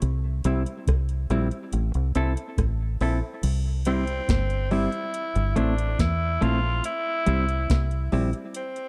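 A dry, close 1970s-style studio sound with a touch of digital ambience frames this sunny, uplifting roots reggae excerpt at 70 BPM in C mixolydian, moving between C and Am. A soft vintage rhythm box with a deep kick, tonal snare and metallic hats sits beside a dark, round fingered dub bass carrying tube saturation. A clean, compressed semi-hollow electric guitar enters at 0.5 seconds, bathed in spring reverb and tape echo, and at 3.9 seconds a raspy, gritty tenor saxophone takes the melody with light vibrato and its own tape echo, forceful and up front.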